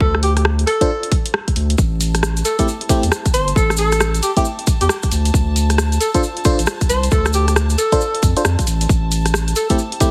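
UK garage in a two-step groove at 135 BPM with a swung feel, this soulful, moody excerpt sets a mellow, subtone alto saxophone melody with tape echo over a thick, saturated sub bass that pumps against a tight, tape-warm electronic kick, while a dry analog drum machine adds hi-hat and rim click. A glassy, bell-like FM electric piano enters with chorus, phaser and filtered stabs at 0.8 seconds, a grainy tube shaker joins at 1.8 seconds, and a soft, breathy pad warbles in the background from 2.1 seconds as the chords move from D5 through A7(no3) and Dm7 to Am7. The whole mix carries a heavily compressed, radio-like sheen with vinyl crackle and light reverb.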